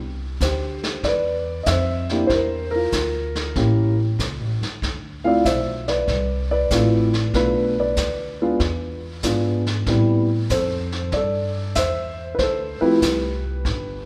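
A woody, thumpy pizzicato upright bass on gut strings opens this relaxed, swinging jazz piano trio excerpt. At 0.4 s a dark, mellow grand piano enters up front with the melody and a long sustain, alongside a vintage brush drum kit with brushed snare, hi-hat and a punchy kick, its top rolled off and sitting softest in the mix. The harmony moves from Cmaj9 through A7b9, Bm7b5, E7b9 and Am7 before settling on a D7 chord with its third omitted, all wrapped in a wet recital-hall reverb that lends the spacious air of a church or concert hall.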